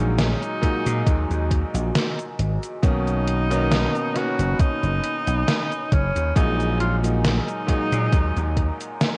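Woozy and nostalgic, this vaporwave excerpt drifts at 68 BPM in F# major with a gentle swing, moving from F#69/A# to Bmaj9 and back over a worn, warbling cassette sound with a dulled top end and light digital ambience. A thumpy electronic kick and a gated 80s drum machine of snare, hi-hat and cabasa sit up front with a punchy vintage slap bass, while a bright, clangy electric grand piano with subtle chorus plays the accompaniment and a detuned, slow-attack pad hovers in the background. A clear, distant tenor saxophone with vibrato carries the melody through tape echo from 0.2 seconds, its pop-styled phrases sounding roomy yet forceful.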